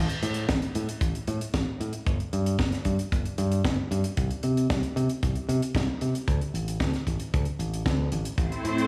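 A straight 4/4 dance pulse drives this short italo disco excerpt, with a polished acoustic kit setting out hi-hat and a high-tuned snare in small room ambience and gated reverb, alongside a dry, airy, tight kick. A fingered electric bass opens the cut at 0.0 s, bright, direct and up front, moving between G1 and C3 with tape echo trailing its notes. The mood is melodramatic yet danceable, and the harmony settles onto a D5 chord at 6.3 s. Just before the close, at 8.4 s, a vintage string machine arrives with swirling, warbling sawtooth chords, its slow attack colored by ensemble chorus and phaser. Light studio reverb and a layer of vinyl crackle frame the sound, which is tuned to A4 = 435 Hz.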